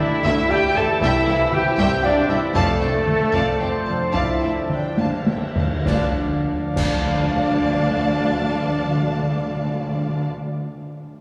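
A wet church reverb with a long tail fills this excerpt of a heroic, dark orchestral film score in D minor and 3/4, moving at 100-117 BPM and slowing between 1.8 and 5.9 seconds. A lush, softly bowed violin section carries the melody over a background violin line, smooth violas, vibrato-rich cellos, woody, very quiet double basses, and an airy, close-miked flute second line. Mellow horns, distant trombones and a faint woodwind section hold sustained chords, and shadowy trumpets add stabs. Heavy-stick taiko drums drive from 0.2 to 7.0 seconds, with dry snare, bass drum, clash cymbals and a cymbal swell joining at 2.6 seconds. Round, soft-mallet timpani play a fill that leads into a full band accent at 5.9 seconds.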